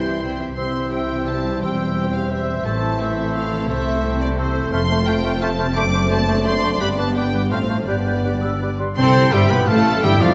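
Urgent and stormy, this fast romantic orchestral movement at 172 BPM in 3/4 moves with a rubato feel in C major, cut from a longer piece. A lush, vibrato-rich violin section carries the melody over a second line from a mellow, airy flute section, a focused studio violin section and a lightly vibrating solo oboe that joins at 0.6 seconds. Beneath them a very quiet viola section, a solo bassoon, tight French horns holding sustained chords, a ringing fingerpicked harp playing arpeggios, and bowed cellos and a distant, expressive double bass section supply accompaniment and bass. The harmony travels from C through A minor, F, D7 over F sharp and G before landing back on C at 9.0 seconds, where a very quiet trombone section adds sustained chords, a dark, punchy trumpet section adds stabs and a soft-edged tuba deepens the bass. A wet concert hall reverb with a 2.0-second decay surrounds the ensemble, with the top end rolled off above 8.0 kHz.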